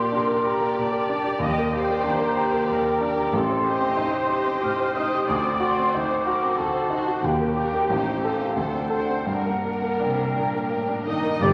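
Tragic and brooding, this rubato classical passage in G minor and 3/4 time, moving at 81-95 BPM, sets a clear, up-front grand piano melody against a hollow flute section, a bowed violin section with rich vibrato, a distant viola section and a background cello section from the opening, before a second violin section takes up the melody at 11.1 s alongside sustained chords from a mellow French horn section and stabs from a trumpet section, with a clarinet, an oboe, a double bass section, a tuba and soft-mallet timpani joining at 11.4 s, the whole piece set in a wet scoring-stage reverb over a vinyl crackle.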